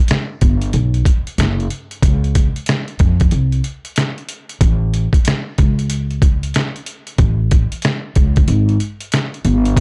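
A sampler-style trip hop drum kit opens this cool, smooth jazz-hop passage, its compressed, pitched-down hits sounding gritty and up front, with a thumpy kick, a medium-tuned snare and hi-hat that carry the character of being re-recorded in a small room. The kit starts at 0.1 seconds, and a pizzicato upright bass follows at 0.4 seconds, its gut strings giving a woody, dark tone that sits close and present in the mix. The groove moves at 93 BPM in 4/4 with a 65% swing on the sixteenths, giving the hip hop beat a relaxed, loping feel. The bass stays low, ranging from F#1 to E#2 beneath the drums. The whole sound is dry, with little reverb, and carries the grit of hardware and cassette tape. This single section runs to 9.8 seconds and is cut from a longer piece.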